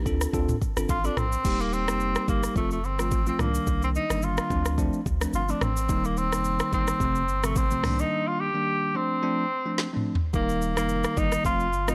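Afrobeats at 108 BPM with a lightly swung sixteenth-note feel, this sultry, hypnotic passage cut from a longer piece cycles through Dm7, Eb, F and Cm7 over a punchy, sine-like sub bass with a pitch-drop attack and an up-front electronic drum kit of deep kick, woody snare, dark hats, rim clicks, shaker, toms and crash. A bright, clean, bell-like tine electric piano carries the accompaniment, while a warm, vintage tenor saxophone with light vibrato enters at 0.9 seconds to take the jazz-style lead up front. A drum fill from 9.8 to 10.3 seconds leads into a final section, all set in light digital reverb.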